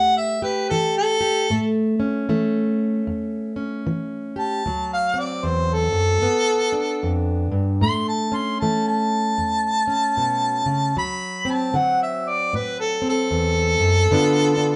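Harmonica and guitar start together in this gritty, laid-back acoustic country blues, a short cut from a longer piece played with an easy swing. The harmonica carries the melody with a mellow, jazz-inflected tone, light vibrato and scooped notes, sitting up front yet sounding distant and roomy. Beneath it, a plugged-in steel-string parlour guitar fingerpicks the accompaniment with a warm, acoustic tone, also placed up front. The chords move through A7, D7 and G7 before settling on A, and at 11.0 seconds the harmonica takes a solo over D7 and G7. The duo plays live in one room, bathed in a wet studio reverb with a soft, rounded top end.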